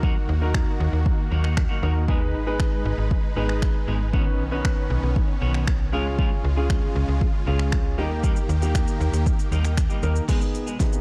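Confident and energetic, this dance-pop excerpt moves at 117 BPM in a straight 4/4, set in G# dorian. A deep house drum kit sits up front with a punchy kick, fat snare, metallic hats, finger snaps, shaker and crash, all pushed through overdrive, while a slap-like FM bass with a snappy, metallic attack pumps beneath it in the low register. A clear, intimate grand piano, its action noise audible, plays pumping accompaniment alongside huge, lush supersaw chords that are bright and detuned, and a clean electric guitar with subtle chorus picks out a riff. The harmony travels from D#m through G#m, Badd9, C# and D# before landing back on G#m at 10.3 seconds, where the supersaws drop out, just after the bass, for a drum fill. A very quiet riser enters at 10.7 seconds as the clip ends, all wrapped in a dark digital ambience.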